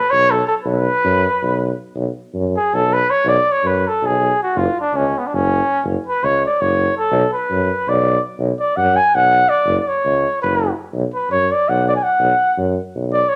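A mellow trumpet with light vibrato opens this bittersweet, virtuosic Balkan folk excerpt in B minor and 7/8, with a warm tuba joining on the bass at 0.1 seconds, both played up front in a classical style as the 328 BPM pulse speeds up and the trumpet takes a solo from 2.0 seconds, all set in a large studio with moderate reverb.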